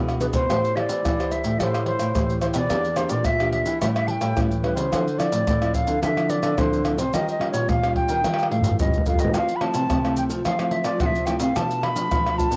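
A drum fill from the maracas, pandeiro, tamborim and surdo opens this samba and choro piece in A minor at 108 BPM, with the two nylon-string guitars already sounding and the wooden flute entering at 0.2 seconds. The percussion sits up front, compressed and saturated, with a tight surdo and hard hands, and it fills again between 8.2 and 9.3 seconds. The flute carries a yearning, bittersweet melody with an airy, woody tone, crisp attack, vibrato and an unsteady feel, its sound coloured by cassette tape. One nylon-string guitar plays the bass line, thumb-plucked with a small, warm sound and audible finger squeak, while the other fingerpicks classical-style accompaniment, also tinged by tape. The chords move from Am7 through Em7b5, A7, Dm9 and D#9 to Fmaj7 and Bm7b5, heard through a moderate spring reverb in a homespun cassette recording cut from a longer piece.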